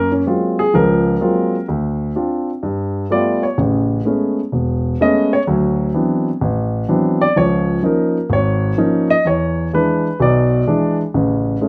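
A swung 4/4 pulse at 127 BPM carries this short, playful solo jazz excerpt, played entirely on a warm grand piano that sits up front and spans from deep E1 to Eb5. The harmony moves through rich extended chords, from Gbmaj9#11 through Dm7, G9, Amaj9, D13, Db69 and E7 before settling on Amaj7 at 11.1 seconds. A moderate studio reverb gives the rough home-demo sound a modest sense of room.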